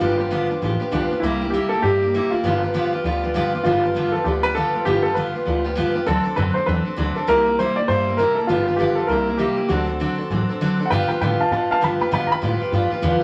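A rowdy, retro rockabilly fragment at a swung 198 BPM in G mixolydian opens with an intimate upright piano carrying the melody up front, its woody tone flecked with audible action noise, over a bright, full-bodied jumbo steel-string guitar picking out the accompaniment and a dark, thumpy gut-strung upright bass played pizzicato, all moving through G7, C7 and D7 changes in a moderate studio reverb dusted with vinyl crackle until the piano takes a short solo at 10.9 seconds.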